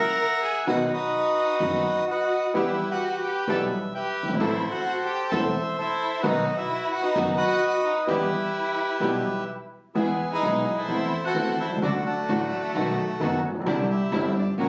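A rubato feel in 4/4 gives this tango, cut from a longer piece, a playful yet nostalgic lilt. A reedy, dark bandoneon sits up front with the melody, paired with a single bowed violin playing a close, expressive second line with vibrato, portamento and a soft attack. At 0.7 seconds a concert grand piano joins with intimate accompaniment, its deep bass and long sustain carrying audible action noise. Alongside it, a very quiet studio string section adds smooth-topped bowed stabs, and a pizzicato upright bass gives a woody foundation. A new section begins at 10.0 seconds. Heard as if captured on a phone in the room, the sound carries a moderate club reverb and compression.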